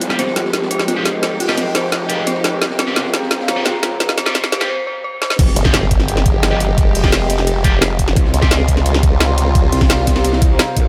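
A sawtooth formant-sweep wobble bass sits up front from 5.6 seconds, just after the drop lands at 5.4 seconds with a knocking, overdriven electronic kick and a very quiet electronic impact. This is a tense, aggressive excerpt of dark technical drum and bass at 173 BPM in 4/4 and F minor. Its straight feel comes from an up-front drum and bass kit with a woody snare and bright hats, layered over a gritty breakbeat kit in the background with dark cymbals and a high-tuned snare. Underneath, a detuned growl bass with sidechain pumping growls beneath a dark studio string section, which holds sul tasto chords with light vibrato under a nostalgic, lo-fi pad that warbles with chorus and its own reverb. During the build-up, an eerie, inharmonic FM synth bell plays arpeggios through phaser and tape echo, while from 0.1 to 8.5 seconds a double-tracked, high-gain electric guitar adds distorted stabs through tape echo. 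The harmony moves between Fmadd9 and Csus4, framed by a light small-room ambience.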